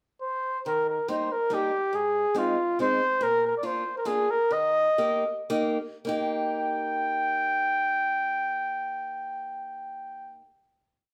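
A lilting 3/4 dance pulse with a light swing on the eighth notes moves between 101 and 143 BPM, giving this short, complete alpine folk piece in Eb major a bouncy, jolly character typical of an alpine dance band. The flugelhorn opens with a pickup at 0.2 seconds and carries the melody up front as a soloist, its punchy, warm tone and classical-style phrasing shaping motif-based, period-like phrases. A picked acoustic archtop guitar sits lower in the mix, supplying off-beat triad chords through a simple Eb, Ab, Bb progression that returns home to Eb. The tempo slows from 3.2 seconds, easing the tune into a held final chord at 6.1 seconds. The two players sound as if they were performing together in one large studio, with a moderate reverb lending the warm brass and acoustic guitar a natural sense of space.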